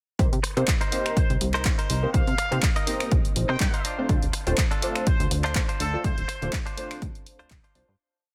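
A dry mix carries this sensual, funky filtered disco house groove, with a tape-warm electronic kick pounding four-on-the-floor up front while a punchy analog drum machine adds programmed hats, claps and finger snaps. A plucky, wave-folded analog bass line and a nasal, detuned polysynth comp with chorus and phaser pump against the beat, joined from 0.4 seconds by a twangy, direct-recorded clean guitar riff with spring reverb. From 1.2 seconds a tight, straight-muted trumpet section adds brilliant short phrases, all under a long filter sweep that runs across the whole piece, with the fade-out beginning at 5.4 seconds.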